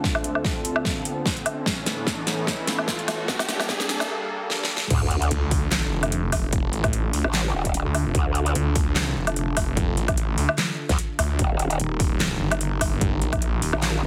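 A growling, formant-filtered wobble bass arrives with the drop at 4.9 seconds and is joined at 5.3 seconds by a snarling, distorted sawtooth bass with a moving notch, driving this chaotic, heavy dubstep excerpt at 148 BPM in a swung half-time feel in D phrygian. Before that, a build-up of drum fills, a filter sweep and a background riser plays over a lush, warbling detuned pad that pumps with sidechain beneath the chords Dm7, Aadd9 and Gmadd9, before the harmony settles on Dm and later moves to Eb. A punchy, tape-warm electronic kick and an up-front kit with a huge snare, metallic hats, handclaps, woodblock and crash sit in light reverb, and the whole mix has a heavily compressed, radio-like sound.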